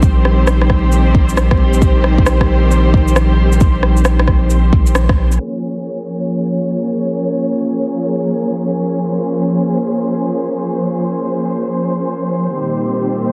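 Rainy and nocturnal, this future garage fragment moves at 134 BPM in Bb dorian with a swung 16th feel. Muted, veiled strings played con sordino carry lush bowed chords with vibrato and pump against the sidechain, alongside a deep, round sub bass, a layered electronic kick, and a low-pass-filtered shaker and rim click, all hitting a shared accent at 5.0 seconds. The kick drops out at 5.2 seconds and the bass and percussion at 5.4, leaving the strings alone under a filter sweep until 13.3 seconds, all wrapped in light reverb, vinyl crackle and a dense, heavily limited master.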